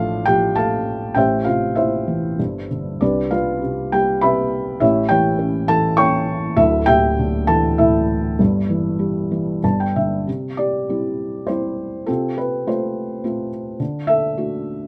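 In a flexible, rubato three-beat lilt, this short excerpt of lyrical classical solo piano feels sunny and gently glowing, played on a felt-muted upright whose thick-felt tone comes across soft, mellow and intimate, sitting up front under close, detailed microphones and light reverb. The harmony drifts from Dm/A and Am through Cmaj7, A7 and Dsus2 before a brief piano fill at 9.3 seconds leads into a new section at 10.3 seconds that settles on C, passes to F/C and ends on D. The instrument spans a broad range from a deep D1 to a high C#6, its darker, natural voice giving the passage a private, close-up character.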